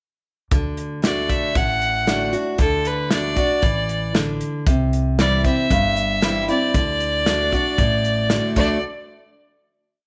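A straight 116 BPM country two groove in 4/4 drives this easygoing, nostalgic honky-tonk piece in D mixolydian. The polished drum kit with its punchy kick and dark cymbals sits under a woody, thumpy upright bass playing two-beat root and fifth, while an up-front, bright dreadnought acoustic guitar alternates bass and strum with bass runs and audible finger squeak. From 1.1 s a clear, intense fiddle with light vibrato plays answering blues licks over the D and C chords in a small, lightly reverberant room, and the piece closes on a final hit at 8.8 s.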